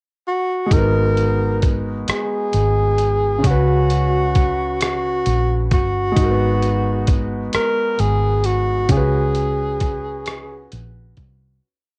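A light-reverb home recording on cassette carries this sultry, late-night, slow six-eight R&B piece in G# minor at 44 BPM, where a breathy tenor saxophone with subtone, vibrato and scooped notes sings a motif-based jazz melody from 0.3 seconds over a clear concert grand piano holding spread chords with grace notes, a dark, round, foam-muted fingered electric bass sliding through ghost notes and chromatic approach notes, and a gritty, compressed sampler-style soul kit with a thumpy kick, hi-hat and rim click, as the harmony moves between G#m7 and C#7sus4 before a fade-out from 8.9 seconds.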